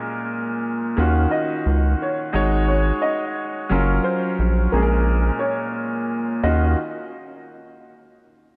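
A baby grand piano opens this tough, gritty boom-bap hip-hop excerpt at 88 BPM in Eb dorian, its open, long-sustaining chords filtered at both ends and placed up front. At 1.0 s a round, deep analog bass with a fast, plucky attack enters beneath it, and from 1.3 s a dark upright piano carries the melody with a worn, woody, boxy tone, audible action noise, a slightly detuned edge and analog delay. Swung sixteenths and a moderate plate reverb soak the mix in a dreamy haze.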